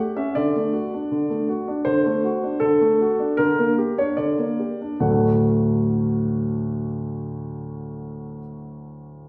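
In a straight 2/4 at 71-81 BPM, this cheerful, elegant classical-period piano sonatina in D major, tuned to A4 = 443 Hz, is a short cut from a longer piece. A solo concert grand with a warm, open tone, deep bass and an up-front presence spans D2 to F#5, easing into a slowdown from 1.1 to 5.0 seconds as the harmony moves from D to Gm/D and settles back on D. A wet recital-hall reverb with a 1.5-second decay places the listener further back in the room.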